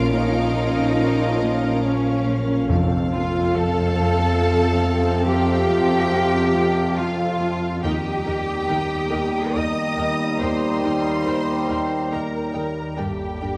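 A slow, straight 3/4 pulse at 70 BPM carries this eerie, tense cinematic suspense cue, where a distant, lush violin melody and a smooth-topped violin second line sit over expressive violas with portamento, up-front cellos and soft-attack double basses; mellow French horns and clear, vintage trombones hold sustained chords, a ringing, thumb-plucked Celtic harp riff and a metallic, warbling FM drone with chorus hover behind, a dark, woody violin texture drifts in and out, and a brief timpani entry lands at 2.7 seconds, all set in a wet scoring-stage reverb as the harmony moves from Bb minor through F and Eb to G minor.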